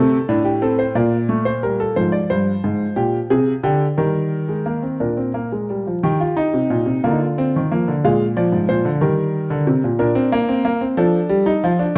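Vinyl crackle sits over a close, detailed recording of a solo concert grand in a recital hall with moderate reverb, the piano up front with a clear, worn tone, deep bass and short sustain. Cut from a longer piece, this baroque-style three-part fugue moves at 60 BPM in a straight 6/8, driving yet contemplative, and spans G2 to F5. Its harmony moves from Gm/Bb through Fm and Bbsus4/Eb, then circles Eb, Bb7 and Bb before arriving on F at 11.0 seconds.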